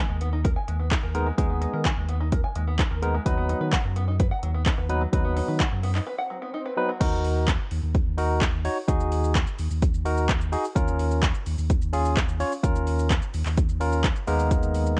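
A barky, bright tine electric piano, a twangy, plunky open-back banjo playing arpeggios through tape echo, and a deep sine sub bass with an octave open this confident, energetic dance-pop passage, each part pumping against the sidechain. A deep house kit with a deep kick, metallic hats, handclaps, shaker and crash sits up front with overdriven grit, while a very quiet electronic swell enters at 5.8 seconds ahead of a brief break and the fingerpicked banjo drops out at 7.0 seconds. The dry mix carries a worn cassette character with warbly pitch drift, and the passage is cut from a longer piece.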